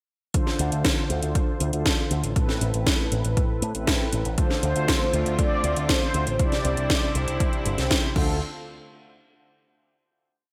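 Italo disco at 119 BPM in D dorian, nostalgic and melodramatic, running as a short verse from 0.3 seconds before closing on a final hit at 8.4 seconds. An overdriven analog kick pounds out a four-on-the-floor pulse, joined by a house drum kit whose cracking snare, metallic closed hats and crash carry a gated reverb and a tape-tinged, up-front disco machine feel. A punchy picked electric bass with an envelope filter gallops in sixteenth notes beneath mellow, detuned sawtooth synth brass stabs, which hold close-voiced chords with syncopated pushes, colored by chorus, digital delay and a touch of ring modulation. At 4.4 seconds a distant, bright symphonic string section adds a bowed sustained pad with light vibrato, and just after, a second synth brass line carries a motif-based melody between A4 and D5. The chords cycle through Dm7, Amadd9 and Cadd9 within a lush hall reverb and bright 1980s-style digital production.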